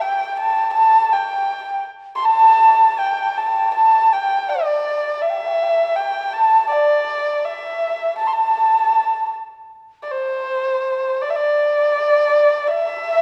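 Tender and graceful, this short cut from a longer piece of Chinese traditional chamber music moves at 80 BPM in a straight 2/4 in the A yu mode, with a dark, nasal erhu carrying the melody up front with light vibrato, portamento and an airy, intimate bow while a breathy, bright bamboo xiao plays a reedy second line in the background, both sitting in a wet recital-hall reverb before the music shifts to a new section at 9.7 seconds.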